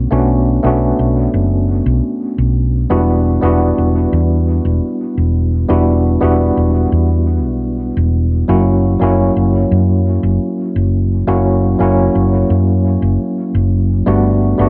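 A tine electric piano and a hollow-body short-scale electric bass, played with the fingers, sound together from the very start of this sunset chillout excerpt, cut from a longer piece. The mood is smooth and warm, in a straight, unhurried 4/4. Sitting up front, the electric piano has a worn, slightly out-of-tune character, lightly overdriven with tape echo, as if heard through built-in speakers. The bass is also up front, round, dark and amped, with the hollow-body tone giving its low notes a soft body. The harmony moves from Bm7 to Em7 at 2.9 seconds, then to F#7 at 8.5 seconds, touching Gmaj7 just before the end. Light reverb and a dusky production give the short passage a cozy, late-evening glow.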